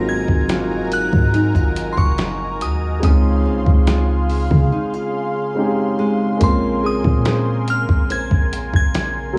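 A dusty, sampler-style drum kit sits up front at a slow 71 BPM in a straight 4/4, its thumpy kick, medium-tuned snare and hi-hat sounding gritty and tape-warm, underpinned by a deep, boomy 808-style bass with a noise layer and a mellow decay. This tender, romantic contemporary R&B excerpt moves through Ab13, Dbmaj7 and Bbm9, with a warm concert grand piano providing accompaniment and a small, fingerpicked nylon-string guitar playing arpeggios beneath a lush, detuned sawtooth pad with chorus. Over it all, a crystalline FM synth bell with chorus carries the melody high above, and a break arrives at 4.7 seconds in this dry, gritty recording.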